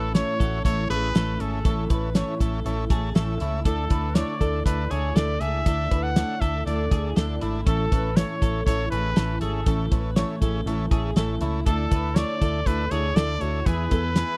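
A straight 120 BPM 4/4 pulse from a cloth-damped, thuddy drum kit with a fat snare and tight kick drives this bright, nostalgic jangly indie pop cut in A major, where a smooth-topped trumpet carries the melody over a fingerpicked, full-bodied steel-string acoustic guitar, a twangy twelve-string electric guitar's chorused arpeggios, a buzzy overdriven combo organ that adds a fill at 2.7 seconds, and a dark, round, foam-muted electric bass, all captured dry and close in a 1970s-style studio as the chords move from A to Dsus2 and land on E.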